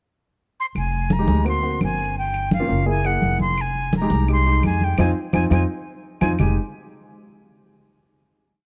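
From 0.8 seconds, a clave time line ticks quietly in the background while congas drive a straight 4/4 at 170 BPM, mixing slaps and open strokes with hard, damped hands on a thin-skinned, medium-tuned pair with a bright tone. This is a short, sultry and fiery piece of Afro-Cuban jazz in F minor. A breathy concert flute opens with a pickup at 0.6 seconds, then shapes a motif-based melody in tongued, straight-toned sentence phrases that sit up front with a slightly unsteady edge. At 0.8 seconds the woody pizzicato upright bass joins with a tumbao that anticipates each chord, and the grand piano soon adds syncopated, rootless chord stabs with short sustain and a deep low end. The harmony moves from Fm7 through Daug7, Gm7b5 and Gb9 before returning to Fm7, and the band hits a shared accent from 5.0 seconds before settling on a final chord. Light reverb and a dark, warm production give the small ensemble a close, intimate sound.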